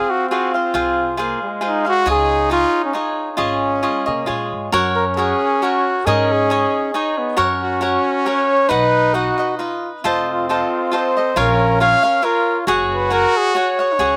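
Proud and romantic, this mariachi fragment in 3/4 sets a mellow, softly attacked lead trumpet with light vibrato up front over a second trumpet line carrying a slapback echo and a crisp, picked cavaquinho, while a woody, thumpy pizzicato upright bass joins at 0.7 s, all heard dry in the open air before the music moves into a new section at 4.7 s.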